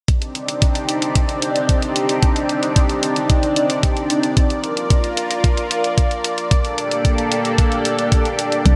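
Danceable and nostalgic, this italo disco excerpt at 112 BPM in C dorian sets a lush, thick, detuned sawtooth pad with chorus and phaser holding sustained chords from Cmadd9 through Bb to Gmadd9 over a thumpy, up-front electronic kick and a sampler-style hi-hat, while a glossy chorused pulse-wave synth bass enters on C2 only at 8.7 seconds, all bathed in a long hall reverb with bright 1980s-style digital sheen.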